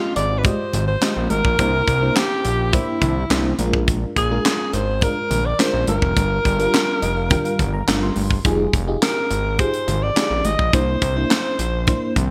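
A breathy alto saxophone with vibrato and scooped notes carries the melody through digital delay in this slick, funky early-eighties boogie funk excerpt in F dorian at 105 BPM, over a mellow FM electric piano with tremolo and phaser that takes a fill at 6.7 seconds, a fat, detuned sawtooth analog bass, a tight drum kit of kick, high-tuned snare, hi-hat and handclaps in gated reverb, and very quiet, bright congas, all moving through Fm9, C9, Bb7 and Gm7 in a bright digital production.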